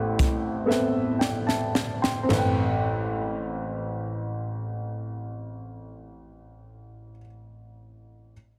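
A slow 6/8 pulse of roughly 34-42 beats per minute, counted in dotted quarters with a straight feel, opens this brief fragment of a fervent, soulful gospel piece in A minor, and the tempo slows over the opening bars. An upright piano carries the accompaniment for the whole clip, its woody, slightly detuned tone spanning from A1 up to C6 and sitting close to the listener, beginning on an Am9 chord. A crisp fusion drum kit joins at 0.2 s with crash cymbal, hi-hat, punchy kick, high-tuned snare and toms, and it plays a fill starting at 0.7 s before stopping at 2.6 s. The kit sounds acoustic, airy and polished, as if captured in a studio room, and it too is placed up front. After the drums stop, the piano carries on alone into the second section. Light reverb surrounds the parts, and a heavily compressed radio-style sound gives the mix a squeezed character.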